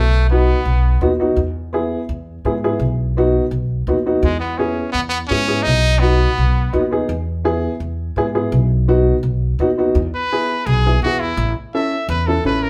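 A straight 4/4 cumbia pulse at 168 BPM in E major drives this joyful, festive excerpt from a longer piece, with a growly, woody pizzicato upright bass and an intimate upright piano with audible action noise filling a live large-studio room, while a bright, punchy trumpet with vibrato and scooped notes carries the melody in short phrases before taking a solo from 10.0 seconds.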